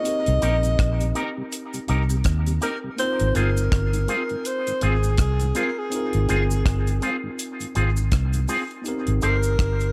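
A breathy, close-miked alto saxophone carries the melody up front with soft attacks, scooped notes and vibrato, its whispered tone trailing tape echo over a smooth, tender lovers rock groove at 82 BPM in Ab major, swung on the sixteenths. Beneath it sit a dry reggae drum kit with a tight kick and rim clicks, a round, foam-muted fingered bass that is dark and punchy, and a cabasa in the background, while a clean tine electric piano with dub echo and a mellow tonewheel organ on slow rotary speaker fill out the chords from Cm7 to Ab6. Picked stabs from a dark electric guitar through an envelope filter add vibrato and dub echo, the organ dropping out at 8.6 seconds before the harmony settles on Abmaj7 at 8.9 seconds in this short cut from a longer piece.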